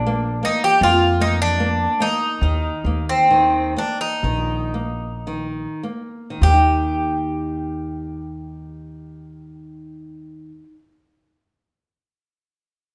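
A moderate recital-hall reverb surrounds this short passage from a tender, nostalgic fado-style ballad in Eb major, played rubato in 4/4 somewhere between 50 and 81 BPM and slowing down through its first 6.4 seconds. Up front, a bright, metallic Greek bouzouki picks the melody on its double strings, some doubled at the octave, while a pizzicato upright bass with gut strings gives a dark, woody, thumpy low end. A small, bright, fingerpicked nylon-string guitar plays its accompaniment more quietly. The harmony moves from Bb to Eb5 at 2.4 seconds and settles on Eb at 6.4 seconds.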